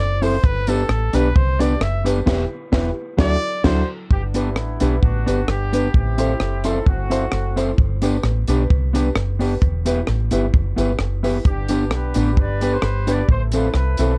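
A cheerful, bouncy ska groove in 4/4 at 131 BPM in G major, gently swung and driven by a punchy, up-front cocktail drum kit with a high-tuned snare and dark cymbals, a round, foam-muted fingered electric bass, a clean, mellow electric guitar with spring reverb, woody upright piano stabs with audible action noise, and a jingly tambourine tucked in the background. A close-miked, clear trumpet opens with a solo over a band accent, then a distant, roomy horn section with light vibrato takes up the melody at 4.1 seconds and returns at 11.5 seconds. Cut from a longer piece, it carries a touch of reverb and the soft grain of cassette tape.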